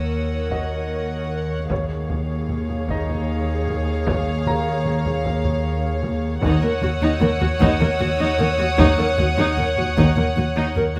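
Close, detailed microphones in a moderate scoring-stage reverb frame this excerpt of an ominous, eerie suspense film score in Eb minor, moving at 76 BPM in 3/4 through Ebm7 and Dbadd9/Eb. A distant, floating violin section carries a pure sul tasto melody over a second violin line, soft-bowed violas, dark background cellos and double basses, and a deep, punchy sine sub bass drone with a pitch-drop attack. A brilliant baby grand piano with long sustain and audible action noise adds texture, very quiet band-limited taiko with hard sticks enter at 0.5 seconds, and a faint high violin layer appears at the start and returns at 6.4 seconds.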